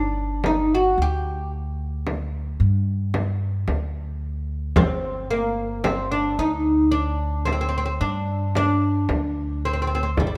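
An Arabic maqam ensemble piece in G minor at 111 BPM in a straight 10/8, this soulful, longing excerpt sets a mellow, fretless oud, plectrum-plucked on double strings with a deep, woody tone across G3 to G4, over a thumpy, bright pizzicato upright bass with steel strings, while a large frame drum played with soft hands in a small room enters at 0.4 s, all three up front under light reverb.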